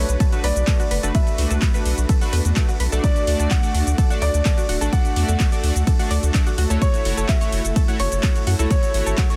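A straight 4/4 groove at 127 BPM drives this expansive, uplifting progressive house excerpt: an overdriven, punchy electronic kick sits up front beside a deep, round analog bass with tube saturation, while a pop drum kit adds cabasa, handclaps, metallic hi-hats and ride cymbal. Over the Bm7, D and F#m7 changes, a lush supersaw pad and a glossy, retro chorused polysynth playing stabs both pump with the sidechain, and a background analog pluck spins arpeggios through chorus and digital delay. A dark, mellow baby grand piano carries the melody with its own digital delay, all within a dense, heavily limited modern master and digital ambience.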